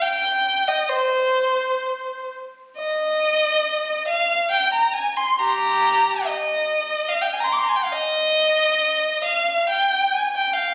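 In a slow 3/4 that breathes with rubato, hovering between 63 and 72 BPM, this short fragment of a classical piece for unaccompanied violin unfolds freely and expressively. The mood is meditative and mournful, the line moving at an unhurried pace. A single bowed violin carries everything from 0.0 to 10.7 s, singing between G4 and D6 with a focused, vibrato-rich tone and a smooth top end. Tuned to A4 = 439 Hz, the instrument sits up front in a moderate recital-hall reverb, its 1.6-second decay lending the phone-captured sound an intimate sense of place. Cut from a longer work, these few seconds feel like a private, sorrowful reflection caught mid-thought.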